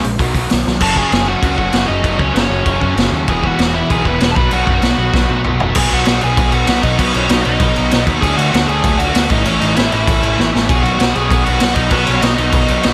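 A rowdy, upbeat punk rock excerpt opens with a gritty, boomy-kicked garage drum kit up front alongside fuzzed, punchy picked bass and two overdriven rhythm guitars riffing in the background, before a bright, biting lead guitar with digital delay enters at 0.8 seconds to carry the melody over light reverb, with drum fills marking the shift into a new section at 5.8 seconds.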